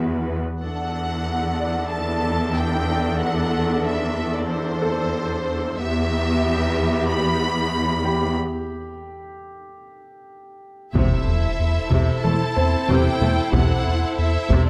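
A straight 4/4 pulse carries this brooding, tense stretch of hybrid orchestral and electronic film score, cut from a longer piece. Lush bowed strings set the scene from the start: a focused, distant viola section fills in the harmony, an expressive cello section sits up front holding a low E, and a bright baby grand piano adds brilliant, open texture with long sustain and tape echo. High above, a violin section with smooth, even vibrato carries the melody over D/E and then Em harmony. After a break at 8.4 s, a rich second violin line, a woody double bass section and a deep, round analog bass riff with a fast attack join in at 10.9 s. A moment later, at 11.0 s, the music lands on Am/E with a huge impact and dry taiko struck with hard sticks. The sound is close and detailed, with light reverb.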